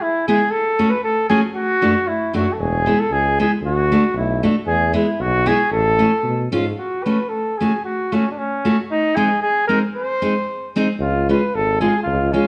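A mellow, punchy flugelhorn opens this jolly, bouncy alpine folk dance-band piece, joined almost at once by a full-bodied, fingerpicked jumbo steel-string acoustic guitar with audible finger squeak, both sitting up front at 114 BPM in a rubato 2/4. A clear tuba carries the bass from 2.6 s and returns near the close at 11.0 s. At 6.8 s the harmony turns to F# harmonic minor, and a moderate recital-hall reverb gives the classical-style flugelhorn a roomy, distant air.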